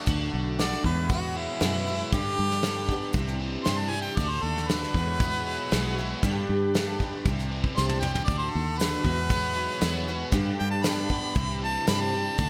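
Bright 1980s-style digital production with a lush hall reverb frames this hopeful folk rock and heartland rock excerpt at 117 BPM, where a clear, up-front harmonica solos over a shimmering, octave-doubled twelve-string acoustic guitar with ensemble chorus, a biting, double-tracked overdriven guitar riff with phaser, a round fingered electric bass, a soft brush drum kit that plays a fill at 7.8 seconds, a very quiet, reedy accordion holding sustained chords, and a jingly tambourine entering at 8.8 seconds, all cycling through D, Eadd9, G and Cadd9.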